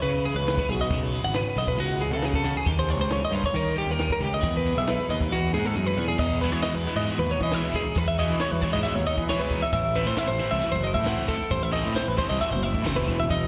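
A straight 4/4 pulse at 136 BPM drives this intricate, wistful excerpt of math rock and midwest emo in E major, cut from a longer piece. Two clean, picked twelve-string electric guitars open together: one sits up front with a chorused accompaniment, while the other, bright and twangy in the background, spins high arpeggios through tape and slapback echo. Underneath, a fuzzed, overdriven picked bass gives a round, punchy low end, and a compact cocktail drum kit with dark cymbals, a high-tuned snare and a punchy kick plays with a dry, natural feel. The harmony moves from C#m7 through D#7 to Emaj7, and a drum fill at 5.3 seconds leads into a new section built on Emaj9 and Am6. At 6.4 seconds a double-tracked, overdriven stack guitar enters with a bright riff carrying slapback echo. It sounds like a live gig heard through the venue's PA, with recital hall reverb lending a light sense of space.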